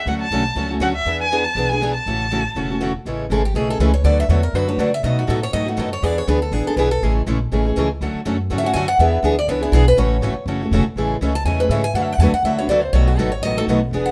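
A swung four-beat pulse drives this playful, lively acoustic string swing in the gypsy-jazz style. A bowed violin opens with an expressive, vibrato-rich phrase full of portamento before dropping out at 2.8 seconds, while a fresh-stringed parlour steel-string guitar and a boxy swing-style guitar keep up the picked accompaniment over a woody, thumpy pizzicato upright bass. From 3.1 seconds a warm concert steel-string guitar takes a picked solo up front through the rest of this excerpt, all set in a moderate studio reverb.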